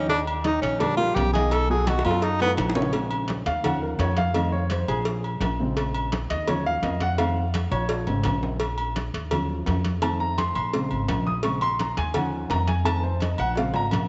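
Driving straight 4/4 at 169 BPM sets this fiery Afro-Cuban jazz cut in Bb minor, taken from a longer piece. A breathy tenor saxophone opens with a short, intimate solo of whispered, scooped notes and vibrato, then stops at 2.5 seconds. From 2.9 seconds the dark baby grand piano takes over as soloist, mellow and up front with audible action noise and short sustain, moving through a cycling Bbm7, Ebm7 and F7 progression. A woody pizzicato upright bass on steel strings anchors the low end up front. The percussion bed blends ringing metal-shell agogo bells and timbales, ringing medium-tuned congas played with soft hands in the background, and tight, high-tuned, compressed and saturated cowbell and bongos, with drum fills arriving at 1.9, 7.7 and 13.6 seconds. A moderate echo chamber reverb surrounds the mix, and its top end stops at 8 kHz.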